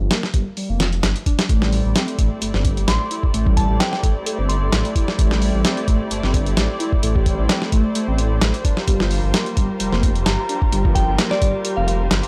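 A dry, gritty hardware recording with a digital ambience frames this energetic breakbeat excerpt, cut from a longer piece and moving at 130 BPM in 4/4 with a light swing on the 16ths, in A minor and tuned to A4 = 436 Hz. Up front, a dusty soul sampler-style kit sets a thumpy kick and a medium-tuned snare beside the hi-hat, its compressed, tape-warm hits sitting in studio reverb. A dark detuned saw bass rumbles beneath with beating, tube-saturated weight. An overdriven synth lead plays a screaming, guitar-like riff through distortion, chorus, phaser, cassette tape and tape echo, with a filter sweep running across its whole length. From 1.5 seconds a muted string section holds veiled, con sordino chords that pump with sidechain, moving from Am7 to Gm7. A glassy FM bell adds a crystalline, decaying melody at 2.9 seconds and again at 10.3 seconds, colored by chorus, telephone sound and tape echo.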